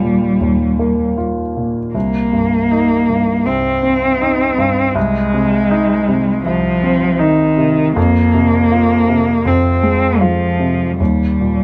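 A single muted cello, bowed con sordino, carries a dark, veiled second line from Eb3 to C4, its vibrato and smooth top sitting up front in this brief neoclassical excerpt for piano and strings. Beneath it, a worn concert grand with a deep bass and short sustain plays the accompaniment from C2 to F4, also close and present. Both parts play throughout the 11.6 seconds, moving at 80 BPM in 4/4 with a rubato feel. In C minor and tuned to A4 = 441 Hz, the harmony passes from Ebadd9 to Cm at 1.9 seconds, then through Ab/C and Fm before arriving on Eb at 11.0 seconds. Close, detailed microphones and light reverb give the playing an intimate, fragile quality, and the mood is one of longing in this fragment cut from a longer work.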